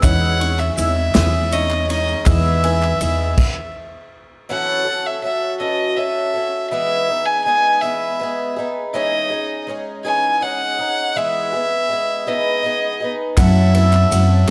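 A smooth, bowed fiddle with light vibrato and slapback echo carries the melody up front through this hopeful indie folk excerpt in E major at 54 BPM in 6/8, over a shimmering, octave-doubled twelve-string acoustic guitar that plays throughout, while a worn, slightly detuned upright piano, a mellow mandolin arpeggiating in the background, a woody pizzicato upright bass, a natural country drum kit with a punchy kick, hollow group handclaps and a grainy tube shaker fill out the opening, drop away within the first 3.5 seconds, and return at 13.4 seconds, all under light reverb.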